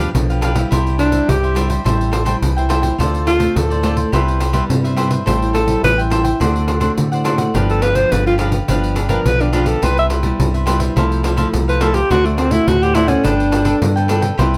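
A mellow, vibrato-tinged alto saxophone opens this festive, joyful samba-and-choro excerpt over crisp picked cavaquinho, fingerpicked classical nylon-string guitar and a round, dark, foam-muted electric bass up front, with a jingly, saturated pandeiro entering at 0.1 seconds as the smooth, jazz-styled saxophone takes its solo from 0.7 seconds through a gently reverberant room.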